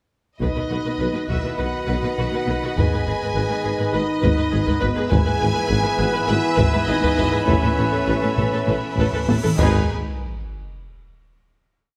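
A heavy-stick taiko ensemble drives this dark, relentless, epic orchestral film cue at 102 BPM in 4/4, its compressed, saturated big drum ostinato running from 0.4 seconds to 10.7 seconds. Above it, a lush violin section carries the melody with vibrato, doubling the tune at the octave, while a second, more distant violin section holds sustained chords in the background. Violas play an intense, driving ostinato, and cellos push a driving bass ostinato with a smooth top, doubled by an even double bass section and a soft-attack tuba. Mellow French horns, tight, bright trombones kept very quiet, a dark, roomy woodwind section and clear trumpet stabs fill out the harmony as it moves through B, G#m, E/G# and Aadd9 before returning to G#m. A drum fill and a huge cymbal swell lead into a final hit with low impacts at 9.9 seconds, and the piece sits in a moderate scoring stage reverb.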